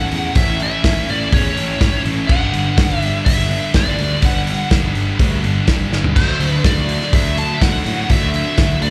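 Quiet-loud alternative rock at 124 BPM in 4/4, angsty and brooding, this short cut from a longer piece is heard as a live club gig through the venue's PA, steeped in small-room reverb. A biting, overdriven lead guitar with slapback echo carries the melody over two distorted riff guitars sitting in the background, one scooped and high-gain, the other thick fuzz with its own slapback echo, while a punchy, fuzzed picked bass anchors the low end. The loose, up-front indie drum kit, with dark cymbals and a punchy kick, enters at 0.1 seconds and plays a fill at 5.9 seconds as the chords move from A to Gmaj7 to Dadd9.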